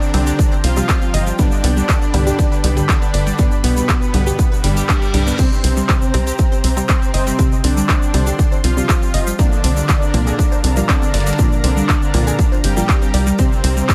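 A soft, airy supersaw melody opens this dark, cinematic melodic techno excerpt at 120 BPM. From the start it is joined by a fat, detuned polysynth second line with dub echo, a thick unison pad holding chords, muted dub chord stabs with a cassette-tape tint, and a grainy egg shaker. Then a saturated, driving sequencer bass and a lush background pluck arpeggio, both pumping under sidechain, arrive alongside a tape-warm analog drum machine with claps and crash and a very quiet, gritty sampler-style kit with a fat snare. A heavy, up-front electronic kick follows from 0.4 s, and a reverse cymbal enters in the background at 4.6 s over the light, echo-heavy mix.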